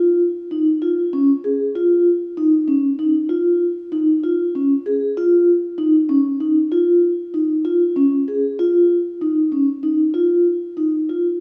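This contemporary instrumental piece, cut from a longer work, has a pensive, restless mood. It moves at 193 beats per minute counted in eighths, in an uneven 11/8 metre with a straight feel, and is tuned slightly low to A4 = 439 Hz. A vibraphone played with soft mallets carries the whole passage alone from 0.0 to 11.3 seconds, staying within a compact span from Db4 to Ab4. Its tone is metallic and ringing yet mellow and warm, shimmering with a fast motor vibrato, and it sits up front with a slightly boxy character. Around it, a wet recital hall reverb lends the sound the resonance of a church or concert hall.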